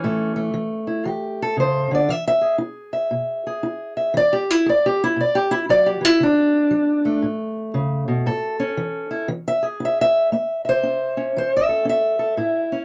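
Laid-back and rollicking, this short acoustic country blues excerpt in A major swings along at 117 BPM in 4/4, carried entirely by an up-front, fingerpicked steel-string parlour guitar with a boxy tone, moving through A, E and D chords in a dry, close 1970s-style studio sound.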